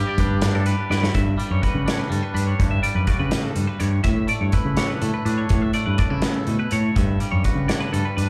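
Swaying in a straight 6/8 at 82 BPM, this intricate, bright math rock and midwest emo fragment in G lydian opens with a raspy, growling trumpet note on G4 that lasts only until 0.7 seconds, over chiming twelve-string electric guitar arpeggios, a twangy electric guitar with spring reverb and slapback echo, and an overdriven, up-front fingered bass, while a loose indie drum kit with a tight kick enters at 0.2 seconds and throws a fill at 0.9 seconds before the chords move from G through Gmaj7 and A7sus4, all heard as a live gig through a small club's PA.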